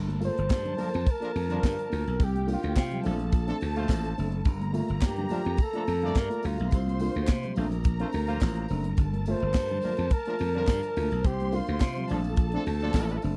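Over a straight pulse from a tight, up-front funk drum kit with a high-tuned snare, handclaps and hi-hat, a growly, punchy slap bass drives this sultry disco cut while a breathy, scooped-note flugelhorn carries the melody from 0.2 seconds over a dark, boxy grand piano, lush bowed violins, smooth horn-section stabs, distant high-tuned congas and a jingly tambourine, all cycling through Gm9, C9sus4 and Bbmaj9 in a dry, close 1970s-style studio sound.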